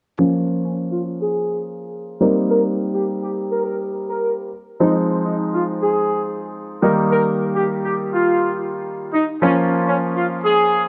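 A tight, up-front horn section carries the melody in this driving, confident pop excerpt, its clear, smooth-top sound colored by light vibrato and a touch of delay. Beneath it, a concert grand piano supplies the accompaniment with a present, deep-bass tone and short sustain, sitting slightly louder in the mix than the horns. Both parts run from about 0.2 seconds to just under 11 seconds, and a low-pass filter shapes each, with a filter sweep spanning the whole passage. The harmony moves through Bbm, Cm7, Fm7 and Eb before returning to Bbm, in a straight 4/4 feel. A moderate, lush hall reverb with a long 2.5-second tail surrounds the performance, giving this short fragment of a longer piece a spacious finish.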